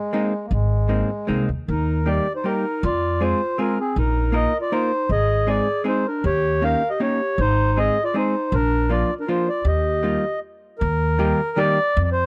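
A dry, close recording with a 1970s studio character carries this whirling, nostalgic musette waltz, cut from a longer piece. A reedy, round accordion sings the melody up front over clean, fingered hollow-body electric guitar and a woody, thumpy pizzicato upright bass, while a distant, roomy clarinet in classical style adds a dark second line from 1.7 s. The music halts in a brief stop at 10.4 s before the accordion, guitar and bass pick up again to finish.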